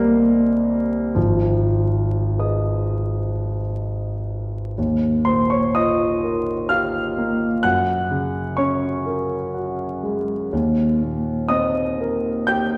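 A present, up-front grand piano with a warm tone and long sustain carries this luminous, serene fragment of impressionist classical solo writing, moving in an unhurried, rubato three-four and reaching from deep bass notes up into the high treble. Lush extended chords drift through its playing, and at 4.8 s the music opens into a new passage whose harmonies glow and shift until the fragment breaks off at 12.8 s. A generous reverb casts the piano into the resonant space of a church or concert hall, while a vinyl crackle adds a nostalgic patina.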